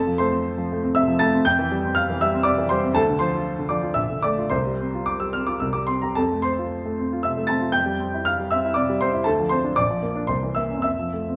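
In a 3/4 with free rubato, moving between 102 and 125 BPM, this hopeful, lyrical romantic character piece in F major unfolds on a solo baby grand piano that spans Bb1 to A6. The piano sounds clear and natural, with a short sustain, and sits up front in a moderate recital-hall reverb. Its harmony wanders from F through Dm and Bbmaj7 to a suspended C before a C7b9 turns the 11.4-second fragment, cut from a longer piece, back home to F.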